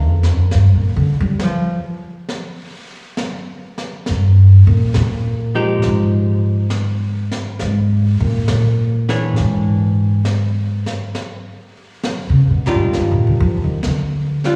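Wistful and smoky, this slow jazz ballad moves at 68 BPM in 4/4 with a gentle swing, and it is cut from a longer piece. The upright bass carries a solo across the full 14.6 seconds, its pizzicato steel strings sounding woody and up front, ranging from F2 to G3. Brushed snare sits softly in the background from 0.2 seconds, high-tuned yet dark and smooth, with a rolled-off top and a slapback echo. The hollow-body archtop guitar, clean, picked and dusky, sounds a brief touch at the very start, then returns at 5.5 seconds with up-front comping touched by slapback echo. The harmony drifts from a rootless Ebmaj9 through a pause in the chords, then Gm7, Fm9 and E6 before settling back on Ebmaj9. The whole performance has the feel of a live gig heard through the venue's PA, with a blend of small room and recital hall reverb around it.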